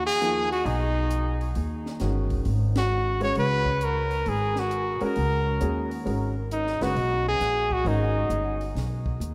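A clear, forceful trumpet opens this modal jazz excerpt with the upright bass. The trumpet carries the solo melody up front with light vibrato and a punchy, present jazz tone, while the woody, steel-strung bass is plucked close to the listener. A warm baby grand piano with a natural sound supplies accompaniment beneath them, and a compact cocktail drum kit adds dry hi-hat, ride cymbal, a high-tuned snare and a punchy kick at a lower level. The whole band lands a shared accent at 2.7 seconds over a swung 4/4 groove, as the harmony moves from G#m7 to F#/G# and then G#m9. A vast, echoing cathedral reverb gives the spiritual, cool mood its sense of space, and the bass and drums carry on after the trumpet falls away, closing together at 9.3 seconds.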